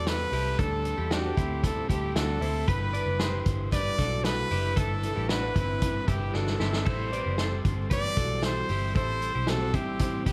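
A moderate studio reverb lends a gentle space to this jangly indie pop cut from a longer piece, where a clear, close-miked trumpet sits up front with light vibrato, carrying a wistful, restless melody at 115 BPM in a straight 4/4. Beneath it, a bright, twangy twelve-string electric guitar picks arpeggios, an overdriven electric guitar stays in the background, and a dark, round, foam-muted picked bass anchors a D7sus4 that moves to G6 at 2.7 seconds. A vintage acoustic drum kit with a punchy kick, dark cymbals and a rolled-off top enters at 0.1 seconds and plays a fill from 6.3 to 6.9 seconds.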